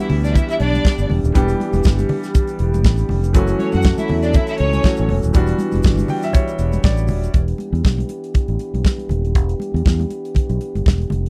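A swung 120 BPM disco groove in 4/4 and E dorian drives this glamorous, danceable excerpt, with a punchy, up-front studio drum kit and an up-front fingered electric bass underpinning a concert grand piano that adds a fill from 5.8 to 7.3 seconds before dropping out at 7.4, while a rich, bowed string section with vibrato plays a second line until 5.1 seconds, a dark French horn section holds smooth sustained chords, and damped, high-tuned congas and a grainy tube shaker sit in the background of this dry, close 1970s-style studio sound.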